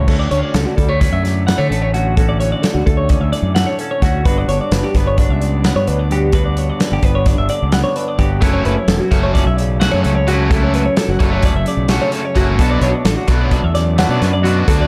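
Counted in 9/8 at 259 BPM in eighths with a straight feel, this playful math rock and midwest emo excerpt in D major moves through Dmaj7, Gmaj7, F#m7 and Bm7, as a loose, small-room indie drum kit with a tight kick sits up front, a punchy, round fuzz fingered electric bass drives the low end, a clean twangy electric guitar plays fingered accompaniment and a bright, compressed twelve-string electric guitar picks high arpeggios, both guitars bathed in spring reverb, until a cranked stack guitar, overdriven and double-tracked, joins with a riff at 8.4 s, the whole framed by a dark production with light reverb.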